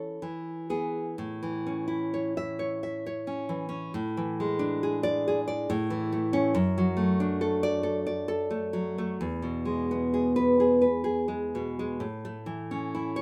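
Romantic solo classical guitar in a sunny, rubato 3/4, where a bright, full-bodied nylon-string guitar, fingerpicked and placed up front, moves through simple major-key harmony across a brief 13.2-second fragment of a longer piece, captured with small-room ambience in a rough home-demo sound.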